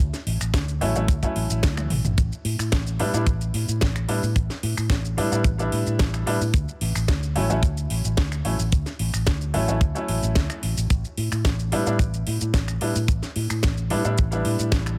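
Nu-disco at 110 BPM in A mixolydian with a feel-good, groovy straight four, where a bright, amped, punchy fingered electric bass with an envelope filter sits up front beside a tight, dry kick entering at 0.5 seconds and a layered electronic house kit of cracking snare, metallic hats, finger snaps, shaker and toms with a drum fill at 1.8 seconds, while a clear baby grand piano with short sustain, sidechain pumping and tape echo comes in at 0.8 seconds over Dmaj7 and A7sus4 chords in a small room ambience, in a portion cut from a longer piece.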